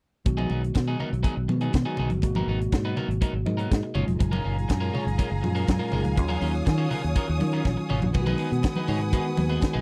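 A tight, up-front funk drum kit drives this danceable disco excerpt at 122 BPM in a straight 4/4, its high-tuned snare, tight kick and dark cymbals sitting in a small, natural-sounding room, with a drum fill at 7.7 seconds leading into a new section. Beneath it, a fingered electric bass plays a round, dark line, while congas with hard hands and a bright, thin skin play along in the background. A mellow tine electric piano and a slightly broken-up, picked electric guitar, compressed and coated in lush chorus, fill out the accompaniment over a progression moving from B6 through Abm9, Gbmaj9 and Ebm9 before returning to B6. At 4.2 seconds a clear, focused string section enters with bowed, vibrato-rich sustained chords high above the groove. The whole recording is dry and close, with the feel of a 1970s studio session, and it runs as a driving cut from a longer piece.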